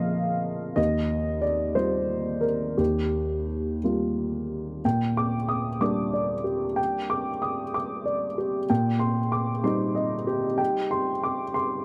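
Intimate and tender, this short fragment of neoclassical minimalist piano moves at 62 BPM in a rubato 6/8, tuned slightly low to A4 = 439 Hz. A single dark upright piano carries everything alone, its woody, mellow tone sitting up front with audible action noise and a faintly detuned character. It spans from Eb2 up to Eb6, opening on a lone Bb5 before settling onto an Ebadd9 chord at 0.8 seconds. At 4.8 seconds a second section begins on Gm/Bb, and the harmony shifts to Cm7/Bb at 8.7 seconds before the fragment ends at 11.8 seconds. Close, detailed microphones and light reverb keep the sound natural and near.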